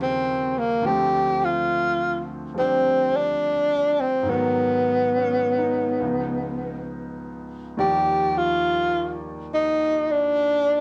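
Jazz ballad at a slow 69 BPM in 4/4 with a swung eighth-note feel, intimate and romantic, moving through chords like Eb9, Dm7, Abm7 and Db9 before settling on Ebmaj7. A breathy tenor saxophone carries the melody up front in a whispered, soft-attacked voice with gentle vibrato, and a clear baby grand piano accompanies underneath, its long sustain and audible action noise colored by a cassette tape effect. The home cassette recording sits in a moderate studio reverb, and this 10.8-second passage is cut from a longer piece.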